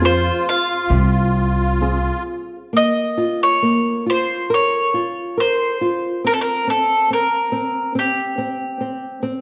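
A bright bowl-back mandolin carries the melody of this short fado-style ballad, its picked double strings sitting up front from 0.1 s and ringing through to 9.2 s in a longing, passionate mood. The tempo hovers around 69 BPM in 4/4, but the feel is rubato, so the line breathes freely over a Bb harmonic minor setting, moving from Fm to Bbm at 2.7 s. A fingerpicked nylon-string guitar provides a small, warm accompaniment across the whole cut. In the opening moments, a reedy musette accordion adds a shimmering, close-miked second line, while a woody, growly upright bass plucks thumpy low notes before both drop out after about 2 seconds. The room is a moderate recital hall with a natural reverb, and the passage later opens into a stretch with the chords falling away, leaving the mandolin and guitar suspended in that space.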